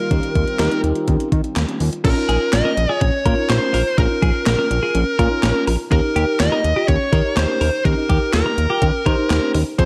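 Nocturnal and driving, this synth-pop excerpt at 124 BPM moves from Ebadd9 to Bbm and back, with a distorted fuzz lead guitar carrying the melody up front over a fat, saturated analog bass and a thumpy, overdriven 80s drum machine with gated reverb on the snare, handclaps, hi-hat and crash, while a bell-like tine electric piano, a soft round pluck playing arpeggios, a twangy twelve-string electric guitar entering at 2.3 seconds and a brassy analog pad heard only in the opening 2.0 seconds and at the very end fill out a dark production.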